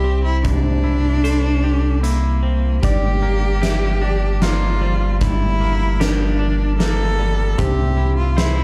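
A rich, vibrato-laden bowed cello sings up front over a deep, punchy sub bass, twangy clean electric guitar arpeggios, soft felt-muted upright piano with audible action noise and background pedal steel swells, before a big, dark rock drum kit with a fat snare enters at 0.4 seconds, giving this cathartic, cinematic post-rock passage in 3/4 the feel of a band playing live in one large studio room as it moves from C to G minor and back.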